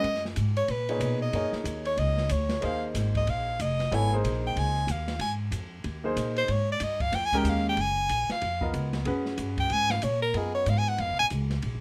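Set in a moderate studio ambience, this short cut from a longer modal jazz piece swings at 187 BPM with a spiritual, hypnotic mood, as a breathy, close-miked soprano saxophone solos up front with vibrato and scooped notes over an intimate concert grand piano with audible action noise, moving through Db9sus4 and Eb9sus4 before arriving on F#maj9 at 7.8 s, while a woody pizzicato upright bass and a dark, rolled-off small-room drum kit of ride, hi-hat, snare and boomy kick fill out the groove.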